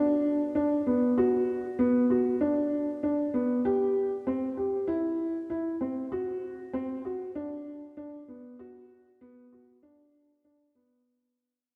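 In a straight 4/4 at 97 BPM, this moving, intimate electronica excerpt features a dark upright piano playing solo from 0.0 to 11.0 seconds, its woody, boxy and slightly detuned tone sitting up front in a range from B3 to G4. The piano is bathed in wet concert hall reverb with a 2.3-second decay, giving the dark, warm production a sense of space. The passage, marked as a drop, begins fading out at 1.2 seconds and continues fading to its end.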